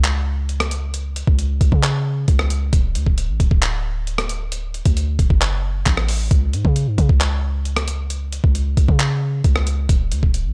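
A deep, boomy 808-style bass sits up front, its sine tone carrying a noise layer, a fast attack and a mellow decay as it ranges from D1 up to C#3. This brooding, dark slice of trap-flavored hip hop moves at 134 BPM in 4/4 with a half-time feel, tuned to A4 = 439 Hz. Beside the bass, a gritty, compressed boom bap sampler-style drum kit supplies a thumpy kick, hi-hat, handclaps and rim click, with a tape-warm character and the sound of being re-recorded in a large room. Both parts run together from the start to roughly 10.5 seconds in a single section cut from a longer piece. The production is dark and warm, with little reverb, keeping both the bass and the drums pressed forward.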